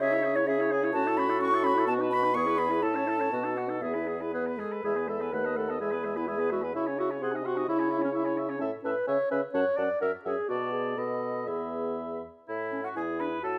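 Closely miked with light reverb, this spirited, graceful excerpt from a quick classical-period movement for wind quintet, in a rubato 2/4, sets the pure, crisp-attacked flute melody above a distant, roomy oboe second line with a touch of vibrato, soft-edged clarinet and clear French horn accompaniment, and a present, up-front bassoon bass, shifting to a new key at 8.6 s.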